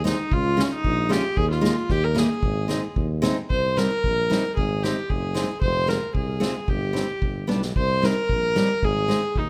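A reedy, gut-toned bowed viola carries the melody up front over a picked steel-string acoustic guitar and a mellow solo tuba with light vibrato, joined at 0.1 seconds by a distant, roomy soft-mallet drum kit with a punchy kick, in this jolly, festive alpine dance-band excerpt at 113 BPM in a rubato 2/4, which moves from A-flat major to C minor at 3.5 seconds and features a drum fill at 7.5 seconds, all in light reverb.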